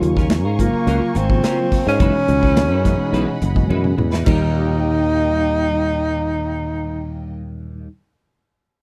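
Opening at once on tine electric piano with ensemble chorus, dark bowed strings, clean picked electric guitar stabs with analog chorus and slapback echo, growly fretless bass and a punchy studio drum kit, this bright, soaring electric jazz fusion excerpt at 106 BPM in Eb mixolydian brings in very quiet, damped congas at 0.3 seconds and a breathy, whispered tenor saxophone melody with vibrato, scooped notes and slapback echo at 0.6 seconds, while a drum fill at 3.7 seconds leads into a new section where the drums soon fall away, captured in a dry, close 1970s-style studio sound.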